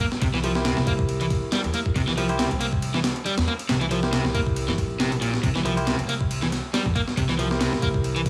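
A crunchy, bright overdriven guitar riff sits up front in this swaggering, raw breakbeat cut at 138 BPM with a light swing, its tube saturation, 12-bit sampler grit, low-pass filter and digital delay coloring a C7 groove. Beside it, a compressed, sampler-style break kit of thumpy kick, medium-tuned snare and ride cymbal sounds overdriven and forward, while a woody, growly pizzicato upright bass enters at 0.2 seconds. Barky tine electric piano stabs, lightly overdriven through a combo amp and echoed by digital delay, join at 0.4 seconds, and the mix sits in a small room with light reverb.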